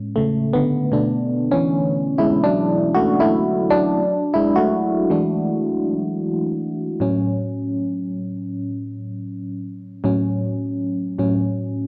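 A dry, gritty recording with a touch of light reverb frames this brief, moody R&B cut from a longer piece, set at 79 BPM with a gentle swing on the sixteenths. A lone FM electric piano with tremolo plays the whole 11.9 seconds up front, its warbling, vintage tone mellow and fast to strike before it decays, with a noise layer beneath. Its longing harmony moves from Amaj7 through Bm11 and E9 to settle on A6.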